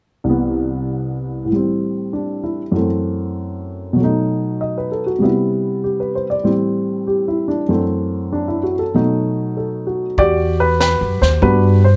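A dark, mellow baby grand piano opens alone at 0.2 s, carrying the melody up front with audible action noise and short sustain as it cycles through Cmaj7, Am7, F#m7b5 and B7 in a moody, late-night jazz piano trio swing at 97 BPM in E minor. At 10.2 s the music settles onto Em9 as a woody pizzicato upright bass and a vintage brush drum kit enter. The bass sits up front, while the kit has a high-tuned snare, punchy kick, hi-hat and a rolled-off top, all under light reverb in this short cut from a longer piece.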